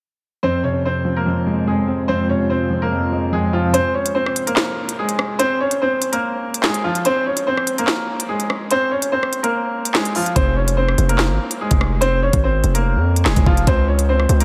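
Drill hip hop at 145 BPM in F minor with a half-time feel, this menacing, cold excerpt opens on a bright, woody upright piano melody over a Fm chord, accompanied briefly by a dark, intimate grand piano with audible action noise and a deep, moody ambient pad in the background. At 3.7 seconds the electronic drill kit comes up front with sharp snare, crisp hats, rim clicks and handclaps, holding back its knocking kick until 10.4 seconds, when a heavy, saturated 808-style bass also arrives. A cathedral reverb soaks the whole mix in a dreamy haze.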